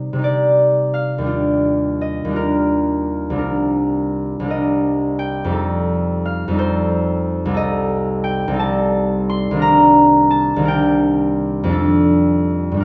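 Mysterious and wistful, this short solo passage for concert harp drifts in C dorian at 57 beats per minute in 6/8, with uneven beats and a free, rubato feel. The fingerpicked harp sits up front and spans from C2 to C6, its mellow, ringing tone carrying the whole 12.8 seconds on its own. The harmony opens on Cmadd9 and moves through Ebmaj9 at 1.3 seconds, then F9, Cm6 and Ebmaj7/C before settling on F69 at 11.8 seconds. A generous scoring-stage reverb surrounds the instrument, and the top end is softly rounded off. Cut from a longer piece, it sounds like a single unfolding section caught mid-thought.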